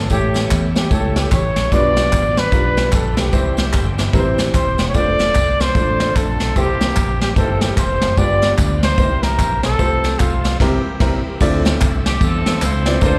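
Heard through a live club's PA with light room reverb, this uplifting, soulful uptempo gospel excerpt swings as a breathy, whispered trumpet carries the melody with slapback and tape echo over a punchy fingered electric bass, a boxy grand piano, a very quiet bright tonewheel organ with slow rotary, soft brush drums up front, and tambourine and handclaps, while a clean electric guitar slips in a brief second line around 3.7 seconds, a band accent lands at 10.6 seconds, and a distant, tight saxophone section takes over the melody at 12.1 seconds.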